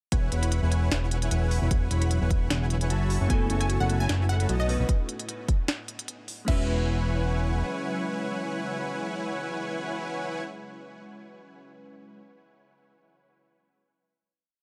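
Lush and euphoric, this short future bass piece runs at 151 BPM in 4/4 with a half-time feel and a light swing on the 16ths, set in E major. It opens straight into the drop, where a hard-clipped electronic kick sits up front beside a trap kit of sharp snare, crisp hats with rolls, and crash, while a fat, saturated analog bass follows the chord rhythm up front in the mix. A huge, compressed supersaw carries the riff in dotted-rhythm chords that throb in tempo, with vintage 12-bit grit and sidechain pumping, and an ethereal pad with a slow attack, ensemble chorus and its own reverb sits in the background from 1.3 seconds. At 3.3 seconds a bright, punchy unison pluck enters with a repeating riff melody through digital delay, joined by glassy digital keys playing held chords with syncopated pushes, treated with chorus and delay. The harmony moves from E6/9 through F#m11 and B9 before returning to E6/9 at 6.5 seconds for a final chord, where the drums drop out and the bass soon follows. 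The pad, supersaw and pluck fade by about 11 seconds, and the keys ring on alone to the close at 12.2 seconds.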